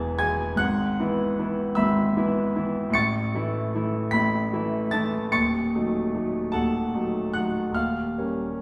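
A clear, natural grand piano opens this melancholic, mournful romantic nocturne excerpt alone, moving with free rubato in a slow 6/8 at 50 dotted-quarter beats per minute, spanning D#1 to C#7 and tuned to A4 = 438 Hz, as its harmony drifts from E through E/G# and A to D#m7b5 and then D#7, all set in a stone room whose 1.4-second reverb places the listener further back in the space.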